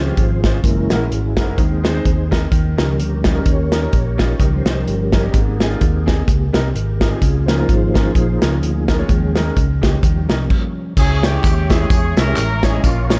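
A soft, flute-like tonewheel organ with slow rotary speaker and chorus vibrato leads this reverent, hopeful uptempo gospel excerpt at 128 BPM in swung 4/4, over a clear, boxy grand piano, a round, amped fingered electric bass, a punchy, up-front acoustic drum kit with dark cymbals, and a very quiet, tight French horn section holding sustained chords until 10.5 seconds, before a brief stop gives way at 11.0 seconds to a smooth-topped horn section melody with light vibrato and background tambourine and handclaps, in a warm, lightly reverberant production.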